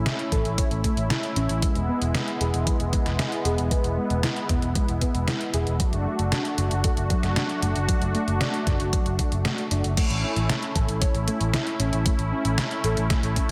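Synthwave at 115 BPM in A major, romantic and uplifting, where a smooth detuned sawtooth pad with sidechain pumping holds sustained chords over A, E and D/F# while a soft, round, dark pluck plays arpeggios through ensemble chorus and delay in the background, an amped picked electric bass adds tube saturation, a sampler-style 8-bit drum machine sits up front with a fat snare, hi-hat and crash from 0.1 seconds, and an overdriven, knocking electronic kick enters at 0.3 seconds, all in a lush hall and a dense, heavily limited modern master, cut from a longer piece.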